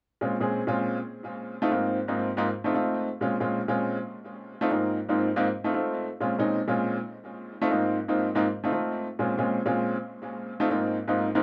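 A straight four-to-the-bar pulse drives this sultry, fiery jazz fragment, cut from a longer piece, where a lone upright piano plays from 0.2 to 11.4 seconds, cycling through Bbm9, F7 and Ab69 chords between Ab2 and Ab4. The piano sounds woody and slightly detuned, with long sustain and a present, up-front placement, touched by tape echo. Close, detailed microphones capture it in a moderate club reverb.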